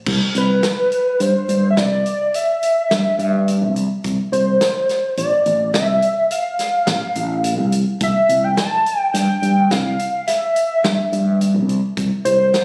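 A hollow, woody square-wave lead with chorus, slapback echo and vibrato carries the melody up front from 0.4 seconds over a growly, bright fretless electric bass and a vintage drum kit with dark cymbals and a punchy kick, driving this intricate progressive instrumental excerpt in 7/4 at 106 BPM in C major through Cmaj7, a rootless Dm7 and C, captured on a phone in a room with light studio reverb and compression.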